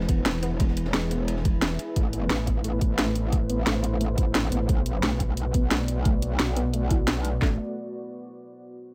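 A dark, aggressive excerpt of technical drum and bass at 176 BPM in A harmonic minor, where a metallic, saturated FM wobble bass with a filter sweep sits up front beside two layered, overdriven electronic kits with knocking kick, cracking snares and bright hats, while a gritty acoustic breakbeat kit with dark cymbals murmurs in the background only until 1.9 s, a deep, moody detuned pad holds sustained chords, and a soft, round pluck with delay and a filter sweep traces arpeggios from 0.1 s over the chords E, Am and Bm.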